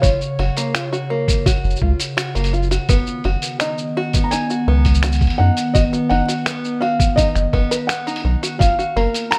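The recording sits in a digital ambience: a delicate, pastoral folktronica excerpt at 84 BPM in straight 4/4, tuned to A4 = 437 Hz and moving from F#maj7 to B/F# before returning to F#maj7 at 8.6 s. A soft, felt-muted upright piano carries the melody through digital delay, while an open-back banjo plays plunky, twangy fingerpicked arpeggios, also with delay, over a warbling, detuned, nostalgic pad of sustained chords with chorus and its own reverb. Underneath, a deep, round sine sub bass sits up front beside a thumpy, pitched-down electronic kick and a muffled, tape-warm sampler-style kit of cabasa, finger snaps and hi-hat re-recorded in a small room.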